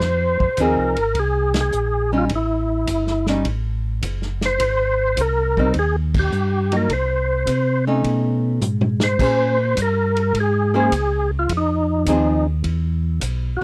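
Smoky and late-night, this short cut from a longer soul jazz organ trio piece swings easily in 4/4. A percussive tonewheel organ carries the melody up front, its tone full and lightly overdriven with key-struck percussion, chorus vibrato and a slow-turning rotary speaker. Beneath it, a mellow second tonewheel organ voice plays the bass line, round and clean with audible key click and its own slow rotary swirl. A dark, hollow-bodied archtop guitar joins at 0.6 seconds with clean picked accompaniment, while an acoustic soul drum kit sits distant and roomy, with dark cymbals, a punchy kick and a rolled-off top. The band hits accents at 1.5 and 6.0 seconds, and the drums add a brief fill as the dry recording carries the chords from Fm7 through Abmaj7 and Bbm9 back to Fm7.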